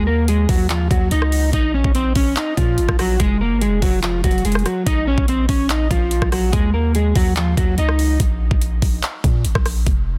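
A half-time trap groove at 144 BPM in 4/4 drives this hard-hitting, eerie hip hop cut in Bb minor. An up-front electronic kit with a knocking kick, metallic hi-hats, handclaps, rim clicks and a softly clipped snare sits over a deep, mellow 808-style sine bass whose long notes strike fast and decay. A dark, slightly broken-up electric guitar carries the fingered melody through digital delay over an Ebm, Bbm, Fm, Bbm, Ebm progression until 8.2 s, all in a dry, dense and heavily limited modern mix.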